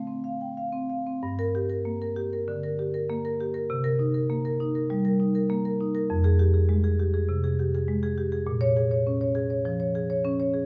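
A solo marimba played with medium-hard mallets sits up front with a dark, smooth tone, ranging from F2 to G5 in this reflective, flowing contemporary classical piece cut from a longer work. The playing moves with a rubato feel over a 4/4 pulse, opening briefly on a rootless Dm7 before a new section begins at 1.2 seconds and drifts through Gm, Cm7, Fmadd9 and Bbm7. A light reverb and the ambience of a small room surround the instrument.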